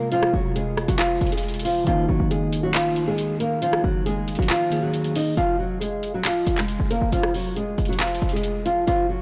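This short cut from a longer trap piece opens with a dark, small-sounding nylon-string guitar, fingerpicked and up front, carrying the melody through a low-pass filter alongside a bright, clean, bell-like tine electric piano. Set in F phrygian at 137 BPM with a half-time feel, the mood is melancholic and dark as the harmony moves from Fm to Gb6 and back to Fm. A produced electronic kit brings handclaps, rim clicks and metallic hi-hats, while a punchy, tight 808-style bass with a sine body, a noise layer and a fast, decaying attack sits low between F1 and Gb1. The kick drops out from 4.5 to 5.4 seconds, and at 5.4 seconds the electric piano stops, leaving the guitar, drums and bass to carry the closing stretch. Light reverb and a digital ambience surround the mix, and the whole recording has a blown-out, overdriven character.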